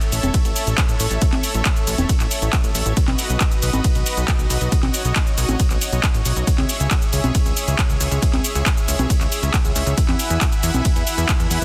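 Bittersweet and soaring, this short cut from a longer uplifting trance piece moves at 137 BPM in a straight 4/4, centred on C# minor. A lush, airy supersaw pad holds sustained chords from E4 to B5, its detuned unison saws carrying a noise layer, a sub octave and a soft attack, roughened by vintage 12-bit sampler grit and pumping against the sidechain. Beneath it, a plucky analog bass sits up front with a punchy, funky fast attack and decaying sawtooth and square tones, shaped by a filter sweep and its own sidechain pumping, entering at 0.1 seconds. A punchy analog drum machine, tape-warm and forward, brings congas, handclaps, hi-hat, ride cymbal and shaker, while a separate electronic kick drum joins at 0.3 seconds. The harmony moves from A to B, then to C#m and finally Eadd9, all set in digital ambience with a dense, heavily limited modern master.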